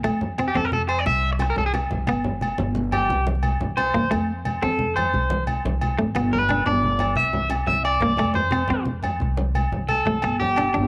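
Sunny and joyful, this short cut from a longer highlife guitar band piece rolls along at 118 BPM in a straight 12/8, centred on F major and tuned slightly flat of standard pitch. A clean, twangy electric guitar carries the accompaniment and is marked as soloing throughout, its bright, compressed tone wobbling with a warbly pitch drift and cassette tape colour. From 0.5 seconds a second electric guitar, picked and at the edge of break-up, spins arpeggios higher up and sits up front as the loudest part, also tinted by the cassette. Underneath, a woody, thumpy upright bass with gut strings plays pizzicato in a dark low register, while low-tuned, thin-skinned congas with a saturated sound and ringing agogo bells that sound distant in a large room fill out the percussion. The chords move from F through C5, G, a borrowed Ab and G again before landing on C, F, Am/C and G5, all captured as a dry home recording on cassette with little reverb.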